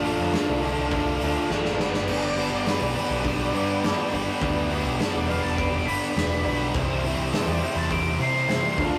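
A crunchy, double-tracked overdriven guitar riff sits up front in this gritty, driving classic rock excerpt at 103 BPM, backed by a growling overdriven bass, a big rock drum kit with bright cymbals and a punchy kick, a thick tonewheel organ holding sustained chords through a slow rotary speaker, and a very quiet, boxy parlour acoustic guitar with finger squeak. After a drum fill from 1.5 to 2.1 seconds, a dark octave-fuzz lead guitar enters in the background with the melody, over chords moving from Dm to G and then C. The rough rehearsal-room recording carries saturation and a studio reverb.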